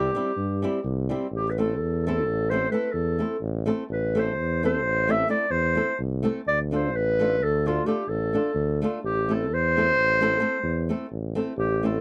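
Close and dry with a light touch of reverb and a 1970s studio character, this bittersweet, fiery stretch of Balkan wedding-band folk in A minor runs at 257 BPM in eighths across a straight 11/8, moving from C through Am and Dm back to Am. A mellow, roomy classical-style clarinet carries the melody up front, while a boxy, fingerpicked flamenco guitar accompanies with audible finger squeak. A warm, classical-style tuba holds the bass line from 0.0 to 12.0 seconds in this fragment of a longer piece.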